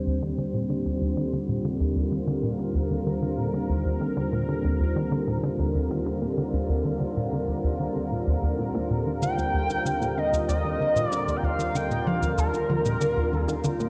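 A straight 4/4 pulse at 95 BPM anchors this luminous, expansive stretch of sequencer-driven ambient space music in Eb major. It is built around a plucky, punchy analog bass riff shaped by a filter sweep and carrying tape echo, and an evolving, detuned resonant pad holding a sustained Ebadd9 chord with chorus. At 9.2 s a bright, shimmering pulse-width lead enters up front with vibrato, portamento, chorus and tape echo, joined by electronic shaker and toms set lower in the mix. The whole passage sits in a wet concert hall reverb and carries the worn, warbling pitch drift of old cassette tape, and it is cut from a longer piece.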